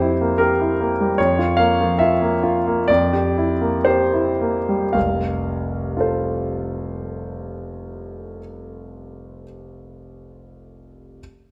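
A wet recital hall reverb surrounds a clear concert grand piano placed up front, its deep bass and smooth, vintage tone filling the room. This is a romantic classical character piece for solo piano in 2/4, cut from a longer work, and it carries a passionate, warm mood with a freely breathing rubato feel. The piano alone spans from F1 up to F5, and the harmony leans on a dominant seventh over a held bass note before resolving home. The playing slows gradually from 0.4 to 5.0 seconds, drawing out the opening phrase. A new section begins at 5.0 seconds on a settled tonic chord, and the piano sounds until 11.2 seconds.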